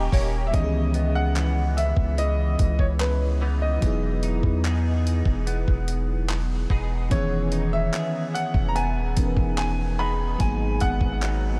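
Moody and sensual, this contemporary R&B excerpt moves at a slow 73 BPM in a straight 4/4, cut from a longer piece and drenched in a huge ambient reverb that gives the mix a dreamy, soaked feel. It opens with a brief FM electric piano fill over a D#7, joined for just the first half-second by a hollow, flute-like pad that warbles faintly before fading away. From 0.5 seconds a clear baby grand piano carries the melody with tape echo, while the lush, detuned electric piano, layered with a soft pad and chorus, holds the accompaniment through the chords C#m9, Emaj7, C#m9/E and G#m7. A bright, twangy direct-recorded clean electric guitar picks arpeggios throughout, colored by ensemble chorus and tape echo. Underneath, a deep, mellow, long-sustained 808-style bass and a gritty, compressed soul sampler-style kit with a thumpy kick, hi-hat and handclaps sit up front, anchoring the haze.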